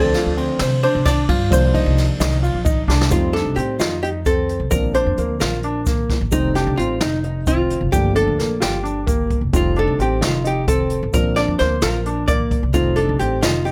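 Set in a straight 7/8 at 262 BPM counted in eighths, this driving, intricate progressive instrumental in F mixolydian is cut from a longer piece, led up front by a clean, hollow-body archtop guitar melody with delay. A brushed drum kit with dark cymbals and a boomy kick sits up front beside a woody, growly pizzicato upright bass, while a clear grand piano plays arpeggios, and a mellow baby grand piano with audible action noise and a grainy egg shaker stay in the background, under light reverb. A drum fill at 2.7 seconds leads into a new section at 3.1 seconds, where the chords move between F7, Bb and Gm7.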